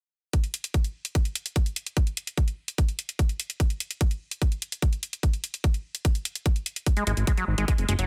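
Psychedelic and intense, this psychedelic trance fragment drives at 147 BPM in a straight 4/4, opening at 0.3 seconds with a tight, overdriven electronic kick up front and bright, overdriven hi-hats. Near the end, at 7.0 seconds, a squelchy, resonant acid bass riff enters with a filter sweep, chorus, cassette-tape colour, sidechain pumping and dub echo, joined a moment later by a fat, detuned sawtooth bass low beneath it as the harmony settles on F#sus2. The sound sits in a digital ambience with a dense, heavily limited modern master.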